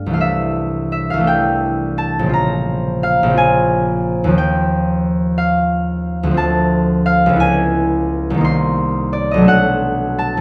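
A solo concert harp opens this dreamy, serene classical fragment, its fingerpicked, ringing tone sitting up front in a moderate stone-room reverb. In a rubato 6/8 lilt of roughly 54-60 dotted-quarter beats per minute, the harp spans from deep Bb1 up to C6, drifting through lush colours from C6/9 to Bbm9 and Eb6/9. It then slips through a chain of minor sevenths, Dm7, Dbm7, Cm7 and Bm7, before the cut at 10.4 seconds.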